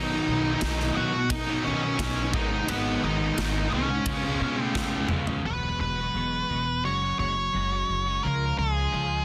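A dense, heavily limited modern master with studio reverb carries this anthemic, cathartic quiet-loud alternative rock piece, cut from a longer song. A dark, up-front octave-fuzz lead guitar with analog delay sings the melody throughout, over the thumpy gut-string pizzicato of a woody upright bass, while bright, compressed fuzz and overdriven guitars riff in the background and a big-room rock kit with a punchy kick and bright cymbals enters at 0.6 seconds, rolling into a fill at 4.8 seconds. Around 5.4 seconds the riffing guitars and drums fall away, and a clean, chorused electric guitar takes up picked arpeggios beneath the lead and bass.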